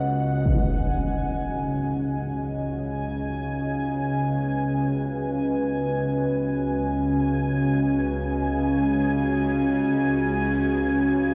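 A string-like, bowed drone sits up front in this unsettling, cavernous dark ambient piece, a nasal sawtooth tone with a noise layer, vibrato and its own reverb, holding low between C#2 and C#3 while a filter sweep works through it from 0.5 seconds onward. Above it, a deep, moody analog pad sustains dark chords from C#4 to D#5, its detuned square, sawtooth and triangle layers and sub octave thickened by lush chorus. High above, a quieter bubbling texture of resonant, detuned sawtooth steps through random filter changes between F#5 and G#5, wrapped in chorus and reverb. At 0.5 seconds a huge, bright impact lands, muffled by a low-pass filter, as the harmony settles on C#5. In free time and cut from a longer piece, the whole passage is bathed in an immense wet reverb with a 7.9-second tail and carries the hazy grain of cassette tape.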